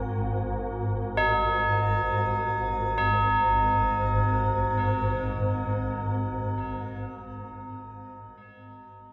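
Drenched in a cathedral reverb with a 5.9-second decay, this cavernous, dark ambient drone piece, cut from a longer work, unfolds in free time, tuned to A4 = 437 Hz and centred on G#. An up-front swarming drone, detuned and granular with a moving notch, slow attack and long release, sits low under its own built-in reverb until 7.2 s. Up-front tubular bells play solemn, metallic, slightly boxy arpeggios through tape echo and shimmer reverb, ringing on alone until 9.1 s.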